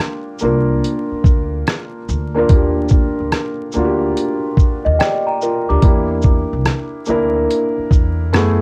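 A swung lo-fi hip hop groove at 72 BPM in 4/4 sets a nostalgic, cosy mood in Eb major, built on a gritty, compressed sampler-style drum kit with a thumpy kick, hi-hat, rim click and shaker sitting up front, while a felt-muted upright piano lays soft, intimate Ebmaj7 chords through cassette tape and plate reverb, shifting to a rootless C7 at 5.8 s. A woody, growly pizzicato upright bass joins at 0.4 s, and a delicate, bell-like celesta line with analog delay appears briefly from 4.9 s to 6.1 s. The home cassette recording carries vinyl crackle and a small room's moderate reverb, and this short cut is taken from a longer piece.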